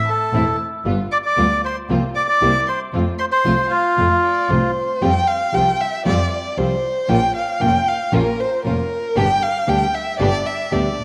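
A reedy, bright bandoneon carries the melody up front in this nostalgic, passionate tango excerpt, stating its line until 4.7 seconds before falling silent. From 5.0 seconds the bowed violin takes over as soloist, close and expressive with a soft attack, gentle vibrato and sliding portamento, after having played a second line alongside the bandoneon from the start. A fingerpicked nylon-string guitar enters at 0.3 seconds with a dark, full-bodied classical accompaniment, while a studio string section adds warm, smooth-topped bowed stabs. Beneath them a single bowed double bass sits clear and earthy yet distant, with a light vibrato. The rubato feel lets the phrases breathe, and a wet spring reverb surrounds the ensemble with a lingering studio ambience.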